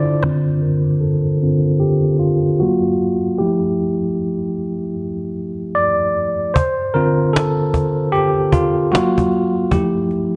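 A bell-like, up-front tine electric piano carries this nostalgic, hazy lo-fi hip hop excerpt in D minor at 76 BPM with a swung 4/4 feel, playing alone through cassette tape coloring, a low-pass filter and a filter sweep over Dm7, F#maj7 and Fmaj9 chords until a close, woody cajon with soft hands and faint snares joins at 6.6 seconds, all within a dark production and a small, lightly reverberant room.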